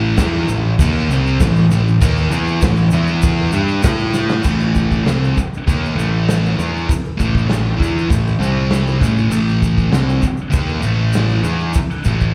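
A gritty live-club sound with small-room ambience and reverb carries this swaggering garage rock excerpt in A minor at 98 BPM, where a thick, double-tracked fuzz guitar riff with slapback echo sits up front over a growling, overdriven picked bass, while a punchy, rolled-off drum kit and a grainy egg shaker stay in the background, a drum fill at 4.1 seconds kicking the music into a new section at 4.4 seconds.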